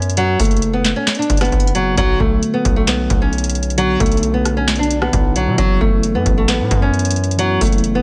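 This brooding, eerie trap cut of hip hop moves at 133 BPM in a half-time 4/4 feel, sitting in B minor across a short eight-second stretch taken from a longer piece. A small, fingerpicked nylon-string guitar carries the melody up front, its acoustic tone softened by a low-pass filter and trailed by delay. Underneath, a distorted 808-style bass hits hard and heavy, a saturated sine with a noise layer, fast attack and decaying tail. The booming analog drum machine sits forward too, pairing a deep kick with a tonal snare, handclaps, rim clicks and metallic hats that carry a short room sound. From 1.9 seconds a mellow, clean tine electric piano joins in the background, filtered and heard through its built-in speakers, as the harmony moves from F#5 to Bm at 2.0 seconds and on to F#7sus4 at 5.6 seconds, all wrapped in digital ambience.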